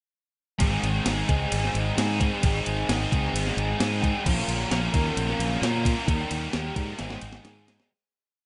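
This short rock piece in the shoegaze and dream pop vein feels blissful and dreamy, moving at 132 BPM in a straight 4/4 in Ab major. An overdriven, double-tracked electric guitar sits up front with analog chorus, playing picked, strummed chords with whammy-bar dips over a progression from Ab through Bbm and Eb and back to Ab. Beneath it, a growling fingered electric bass, bright and overdriven, drives a punchy eighth-note line. A clean 12-bit drum machine sets a pop groove with a thumpy kick, a medium-tuned snare, crash and ride, its sampler-style sound tape-warm, as though re-recorded in a small room. The mix is dry with a dark top end, and the piece starts fading at 6.1 s, with a drum fill arriving at 7.0 s to close it out.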